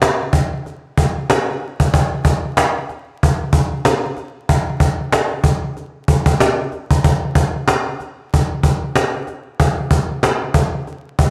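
A swung groove at 94 BPM in 4/4, with a 59% swing on the sixteenths, drives this short hip hop cut from a longer piece. The only instrument is a cajon with snares, played with soft hands and heard up front in a live room for the full 11.3 seconds. Its acoustic tone is snappy, giving the beat a tough edge while the overall mood stays reflective. The recording is dry and gritty, with a studio reverb and a layer of vinyl crackle that lends it a dusty, hardware-made character.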